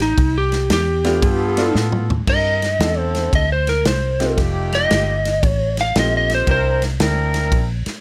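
A lead guitar solo opens this laid-back, soulful electric blues shuffle at 115 BPM, its lightly driven, slightly broken-up tone picked and compressed up front. Beneath it sit a dark, foam-muted fingered electric bass, round and punchy, and a natural country drum kit with bright cymbals, a medium-tuned snare and a punchy kick in a studio room. A clear, woody upright piano with a slightly detuned character joins at 1.0 seconds, and a vintage horn section adds soft-attack stabs with light vibrato from 1.2 seconds. The harmony moves from Cadd9 to G9 before a drum fill leads into the next passage, where it shifts through C9 and F9 and back to C9, all under a 65% swing on the eighths. The guitar solo carries through until 6.8 seconds, with light reverb around this fragment of a longer piece.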